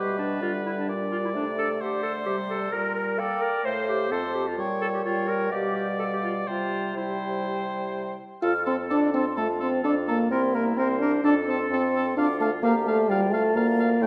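A wet recital-hall reverb surrounds this short, spirited passage cut from a quick classical-period movement for wind quintet, in F major at 129 BPM in 4/4 with a rubato feel. A hollow, pure-toned concert flute carries the melody high above the group, with vibrato and a soft attack, while a clear oboe with light vibrato sings a second line beneath it. The French horn sits up front with a mellow, vibrato-tinged accompaniment, and a distant, roomy clarinet fills in the middle voices. A bassoon with a vintage colour anchors the bass. All five play together across the full 14.1 seconds, and the harmony arrives on F at 8.4 seconds as a new section begins, keeping the cheerful mood bright to the end.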